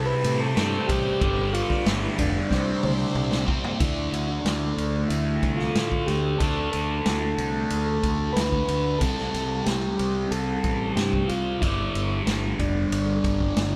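A straight 4/4 pulse from a punchy vintage drum kit, whose fill ends at 3.8 seconds, drives this dark, hypnotic psychedelic rock excerpt, where a bright, double-tracked fuzz guitar riff with phaser sits up front over an overdriven fingered electric bass, a reedy, clean combo organ carries the melody, and shimmering string-machine violins with ensemble chorus hover in the background until 3.8 seconds, all played live in one room with light reverb.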